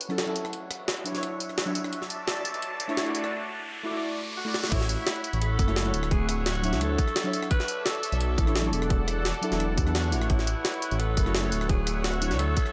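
Deep, dusky chord stabs with vintage sampler grit, chorus and delay open this lush, dreamy liquid drum and bass excerpt in A major at 172 BPM alongside a thick, chorused unison pad under a filter sweep, a rumbling, detuned saw bass and a compressed, pitched-up jungle-style kit with a high-tuned snare, tambourine and rim clicks; an electronic riser builds from 1.5 seconds, a raspy alto saxophone with vibrato and delay takes the solo melody from 4.4 seconds, and an overdriven, tight electronic kick lands up front with the drop at 4.7 seconds, all bathed in plate reverb over cycling A6, Dmaj9, Bm11 and E9sus4 chords.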